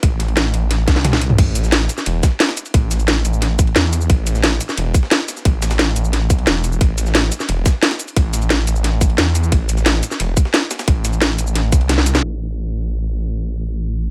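Dark technical drum and bass at 177 BPM in A minor, this futuristic, dark cut pairs an up-front, snarling sawtooth bass, overdriven, saturated and pumping with sidechain, against a tight electronic kick, a layered kit of cracking snare, metallic hats, crash, shaker and toms, and a very quiet, gritty, tape-toned breakbeat kit of ride and snare, all dry and filtered. Drum fills land near 1 second and 12 seconds, the kick drops out near 11.8 seconds and both kits at 12.2 seconds, and the growling bass plays alone to the end under a filter sweep.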